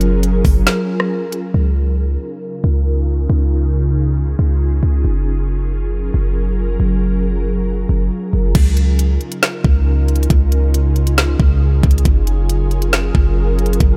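A deep, boomy 808-style bass sits up front through this blissful, floating 137 BPM half-time cloud-rap excerpt, beneath an ethereal detuned pad of sustained Gbmaj9 and Db69 chords with chorus, reverb, sidechain pumping and a filter sweep from 1.5 to 8.6 seconds, while a trap kit with knocking kick, woody snare and crisp hats plays briefly at the start and returns at 8.5 seconds.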